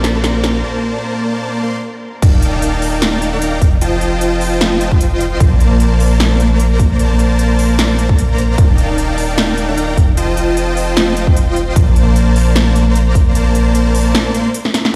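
A stone-room reverb and the boom of a big sound system in a bare space frame this lush, playful future bass excerpt in Bb major, running at 151 BPM with a swung half-time feel and a short build-up with a drum fill before the drop lands at 2.2 seconds. A huge, detuned supersaw riff with cassette-tape grit, vibrato, delay and sidechain pumping sits up front over a deep, mellow sine 808 bass that pumps too, while the chords move through Bbmaj9, Ebmaj9#11 and F7. A tape-warm, big-room dance kit of crisp hats, punchy snare and crash cymbal is joined at the drop by a layered, punchy electronic kick, and breaks interrupt the groove just after the opening fill and again near the end.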